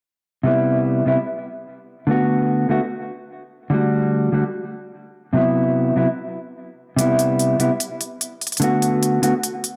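Playful and lush, this half-time future bass passage in C lydian at 147 BPM, cut from a longer piece, centres on a dark, clean, fingered electric guitar with spring reverb and tape echo, up front from 0.4 seconds through chords such as Cmaj7, Bm7/D, Dadd11 and Cmaj7#11, before a crisp, overdriven, layered electronic hi-hat joins at 7.0 seconds, all set in a moderate digital room.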